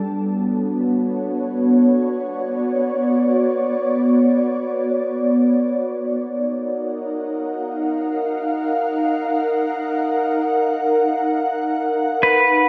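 An ethereal, detuned pad with ensemble chorus and a filter sweep holds melancholic, reflective sustained chords from Bm7 to D#m7 at 5.9 seconds in this ambient fragment, bathed in wet spring reverb and a dark, echo-heavy mix, and at 12.2 seconds a clean electric pedal steel guitar slides in over it on a single fingerpicked note.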